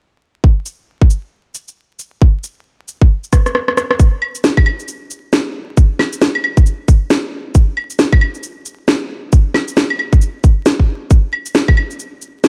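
Rainy and wistful, this future garage fragment sets a tight, layered electronic kick up front beside a swung bed of electronic shaker, rim click, claves and a woody, overdriven snare, all dry and close as if replayed in a small room under a haze of vinyl crackle, with a drum fill from 3.3 s where the kick briefly drops out before the groove resumes until the percussion plays on alone past 11.8 s.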